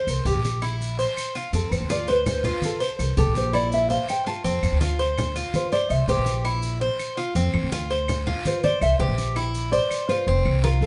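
Latin music in the Cuban son and guajira style, this relaxed, warm passage is cut from a longer piece and played by a band together in one room with a moderate studio reverb. A dark, thumb-plucked nylon-string guitar carries the melody as a classical-sounding solo from 0.0 to 10.3 seconds, while an up-front Cuban tres adds bright, metallic picked arpeggios on its double strings, some of them octave-doubled. Beneath them, a dark pizzicato upright bass with steel strings sits up front, and the harmony sways back and forth between C7 and F. In the background, low-tuned, damped congas struck with hard hands give a thin-skinned snap, alongside dry, woody claves and a raspy guiro. Grainy, mellow maracas sound distant, as if heard from a larger room, and the overall sound stays soft at the top end.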